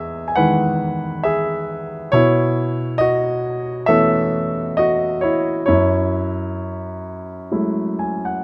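Dark and wistful, this short classical excerpt for solo grand piano moves at an unhurried 58-70 BPM in 4/4 with a rubato feel, drifting from Emaj7 through B9sus4 to F#m9. The warm, polished piano sits up front with a present, short-sustained tone across a range from E2 to G#5, captured by close, detailed microphones in light reverb. A brief piano fill at 7.5 seconds closes the passage.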